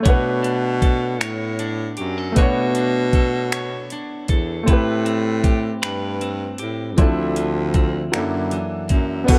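A clean, picked electric guitar with subtle chorus and a natural-sounding baby grand piano open this sultry, yearning slow six-eight R&B excerpt at 52 BPM, joined at 0.1 seconds by an up-front, breathy baritone saxophone carrying the bass line with a mellow subtone and vibrato, and by a tape-warm produced drum kit of knocking kick, metallic hi-hat, finger snaps and crash cymbal, all set in digital ambience over ninth chords from Bm9 to Am9 and Dm9 before an F#7alt.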